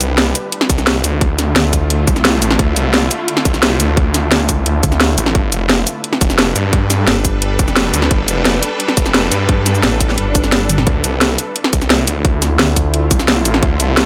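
A snarling, detuned sawtooth bass drives this excerpt of dark technical drum and bass at 174 BPM in D dorian, its distorted, tube-saturated tone sitting up front and pumping against the beat, while a thick FM bass growls in for short bursts, first briefly at 1.6 seconds, then from 4.8 to 7.6 seconds and again from 9.8 seconds. Overdriven electronic drums, with a tight layered kick, cracking snare, bright hi-hats, cabasa and toms, hammer out a mechanical pulse, and a drum fill lands at 10.6 seconds as a faint electronic swell plays in the background. Beneath it all, a swarming, granular drone holds tense sustained chords that move from Dm to G and back, adding a shadowy, evolving layer within a lightly reverberant space.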